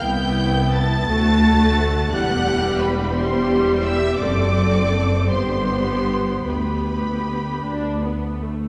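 Lyrical and tender, this slow romantic movement for string orchestra unfolds in G major at 50-58 BPM in a rubato 6/8, heard as a brief passage cut from a longer piece. The first violins carry the melody high above the staff with a focused, lush vibrato and a smooth top, while the second violins trace an even line beneath them. A rich, up-front viola section fills in the accompaniment over close, bowed cellos and a distant, lightly vibrating double bass section. The whole ensemble sits further back in a concert hall whose long, wet reverb surrounds the sound.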